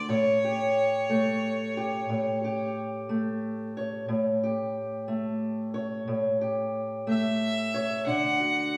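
A lush hall reverb surrounds this short excerpt of acoustic country blues, giving it the airy feel of a church or concert space. Over a swaggering, laid-back 12/8 pulse, a single bowed fiddle carries the melody up front with a focused tone and light vibrato, while a dark, boxy parlour steel-string guitar is fingerpicked alongside it, equally up front. The duo sits on an A7 chord before moving to D at 8.0 seconds.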